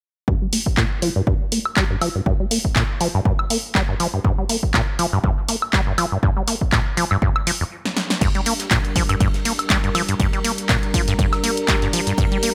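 A squelchy, resonant sawtooth acid bass drives this raw, hypnotic acid house excerpt, its riff up front with tube saturation, subtle chorus, 12-bit sampler grit and tape echo as a filter sweep runs across it until the music stops at 7.7 seconds. Beneath it, an electronic kick and a punchy analog drum machine with crash, handclaps, hi-hat, snare and woodblock sit close and tape-warm, re-recorded in a large room, with a drum fill leading into the second section. At 8.2 seconds a lush, thick unison pad enters with slow-attack sustained chords, warbling with chorus and pumping against the sidechain. A very quiet brush kit with ride cymbal and fat snare joins at the same moment, adding an acoustic studio-room texture under the machines. Light reverb and a swung sixteenth-note feel hold the groove together in this cut from a longer piece.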